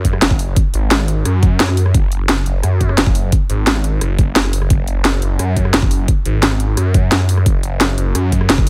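A swirling, thick detuned saw bass sits up front in this dark, aggressive excerpt of technical drum and bass, its sawtooth and sine layers saturated by overdrive and colored by a phaser. Its notes hit with a fast attack and sustain, occupying the low register from the very start at 0.0 s through the end at 8.7 s. Beneath and around it, an overdriven electronic kick drum delivers a knocking punch, while a layered electronic drum kit contributes a cracking snare, a rim click and bright hi-hats, all given grit by their own overdrive. Both drum parts carry the feel of being re-recorded in a small room and are placed close to the listener. The overall sound is dry, with little reverb, keeping the straight-ahead groove hard and confrontational.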